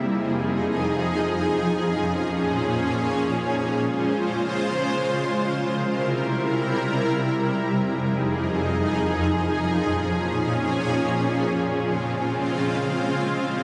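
A shimmering ambient pad carries this hazy, ethereal hip hop fragment entirely on its own, floating in free time for its full 13.6 seconds. Its detuned sine tones rise on a slow attack, sustain and fade on a long release, with an octave-up shimmer and granular texture adding sparkle, and it sits bright and up front across a span from F2 to C5. Chorus, built-in reverb and digital delay thicken the pad, while a huge ambient reverb with a seven-second tail surrounds it, and nothing sounds above 10.9 kHz. The harmony drifts through Fm7, Bbm7, Dbmaj7 and C7 before circling back to Fm7, Bbm7 and Dbmaj7. The result is a dreamy, suspended wash of sound cut from a longer piece.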